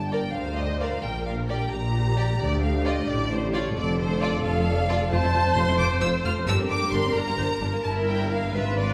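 Set in a rolling compound six-eight metre, this short, stormy excerpt from a fast romantic orchestral movement pushes forward with a restless, dramatic urgency. The first violins carry the melody up front, their lush, vibrato-rich line soaring high, while a second violin section beneath them adds a smooth, even counter-line from 0.1 s. The violas enter at 0.3 s with a rich accompaniment in the middle register. Grounding the harmony, the double basses play a clear, focused bass line, and the cellos reinforce it further back with a soft-attack, expressive sound. A concert harp sits in the background, its ringing fingerpicked arpeggios spanning a broad range. The harmony shifts through minor chords, a major lift and a closing diminished chord, all bathed in a lingering scoring-stage reverb that gives the violins a distant, symphonic depth over the full 8.9 seconds.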